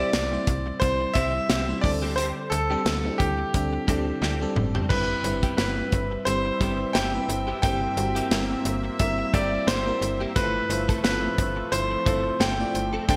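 A bright, brilliant concert grand piano carries the melody up front with a touch of delay, over a glassy, bell-like FM electric piano, a snappy FM bass with a metallic attack, a clean, direct-recorded electric guitar riff tucked in the background, and a tight, up-front studio drum kit with gated reverb. This uplifting, romantic 1980s-style pop passage moves at 88 BPM with a light swing, and a drum fill at 4.2 seconds leads into a brassy, nasal analog pad that enters at 4.9 seconds with sustained, detuned chords and a filter sweep. A lush hall reverb and bright digital sheen wrap the whole, and the excerpt is cut from a longer piece.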